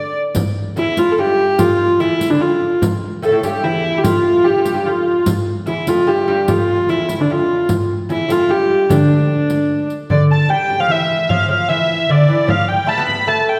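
A dark, woody hurdy-gurdy leads this medieval dance from the very start, its wheel-bowed, keyed melody sitting up front with a smooth top. Beneath it, a delicate fingerpicked lute with doubled gut strings, some octave-doubled, plays a second line in a low register. A small, close frame drum enters at 0.4 s, while a riq adds bright jingles struck with hard hands from 0.3 s until it stops at 10.0 s. The music moves in 3/4 at 148 BPM with a straight feel, gradually speeding up throughout, and a new section begins at 10.1 s. Set in a reverberant concert hall, this cut from a longer piece carries an ancient, mysterious mood.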